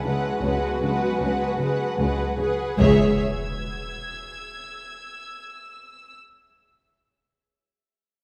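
A vibrato-laden violin section carries the melody with expressive portamento, set close against a second, more distant violin line beneath it in this uneasy, eerie cinematic suspense cue, cut from a longer piece at 78 BPM in 5/4 and C# minor. Rich, even violas fill the middle, while a dark double bass section and a focused cello section in the background hold a low C# bass, and a more distant, smooth cello section plays a riff until 2.6 seconds. A cloudy, detuned granular pad sustains blurred, evolving chords with its own reverb, and a high, lightly vibrato violin texture with a smooth top lingers until 6.2 seconds. At 2.8 seconds the harmony moves from G#m7/C# to C#m as a huge, dark impact lands and rings through to the end. Most of the strings stop at 3.2 seconds, and the whole ensemble sits in a wet scoring-stage reverb with a 1.9-second decay.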